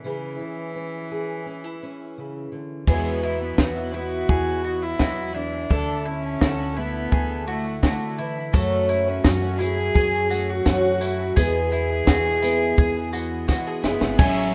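A reedy, gut-toned solo cello carries the melody up front with light vibrato, opening this uplifting indie folk piece at 85 BPM over a bright, full-bodied fingerpicked steel-string guitar. At 2.9 seconds the arrangement builds: a boxy, shimmering twelve-string guitar in the background, round mandolin arpeggios, a woody pizzicato upright bass, a dark, punchy compact cocktail kit with a fill near the end, and later a jingly, saturated tambourine. At 14.2 seconds a smooth second cello line and a lush symphonic string section holding sustained chords join, all in a small room with a rough home-demo feel.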